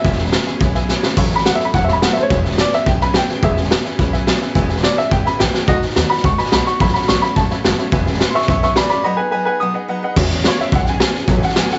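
A small room's light reverb surrounds this upbeat, rowdy rockabilly excerpt in E major at 214 BPM, where a gritty, saturated garage drum kit sits up front with a punchy kick and high-tuned snare, and a thumpy, woody upright bass plucks underneath. A clear, slightly detuned upright piano carries the melody with long sustain, while a jangly honky-tonk piano and a bright picked steel-string acoustic guitar stay in the background. Drum fills land at 0.9 and 5.5 seconds, and after a break from 9.1 seconds the honky-tonk piano takes a short solo at 10.2 seconds as the clip is cut from the longer piece.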